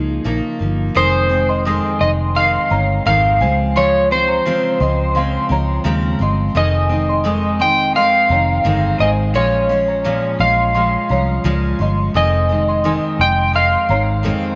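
Laid-back and nostalgic, this 86 BPM indie pop excerpt drifts through a dreamy, reverb-soaked mix, where an up-front, dark, slightly broken-up electric slide guitar carries the melody through lush chorus and delay over a full-bodied picked acoustic guitar with subtle chorus and warbly pitch drift, a round, foam-muted vintage electric bass, and a soft, pure synth bell second line entering at 1.0 seconds, all moving over chords that settle on Fm7, Dbmaj7 and Bbm7.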